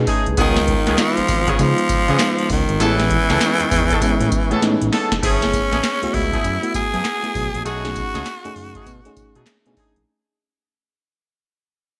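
A raspy tenor saxophone leads this bouncy, punchy new jack swing excerpt, carrying the melody up front with a gritty, edgy pop-style tone and vibrato from 0.4 seconds. Underneath, a booming analog drum machine with a deep kick, tonal snare, metallic hats, handclaps, tambourine and crash cymbals drives a 99 BPM groove in 4/4 with a swung sixteenth-note feel, its snare, claps and hats set in a short room with gated reverb. A smooth synth bass with a mellow, detuned, sustained character anchors the low end. A dark FM electric piano with tremolo fills in the accompaniment, while a tight, vintage jazz-style horn section adds stabs with light vibrato. The music sits in F# dorian, moving through C#7, Amaj9, F#m11 and B13, and a drum fill from 4.6 seconds leads into a second section that fades out from 5.2 seconds. A moderate plate reverb and digital ambience give the whole a bright 1980s-style digital sheen.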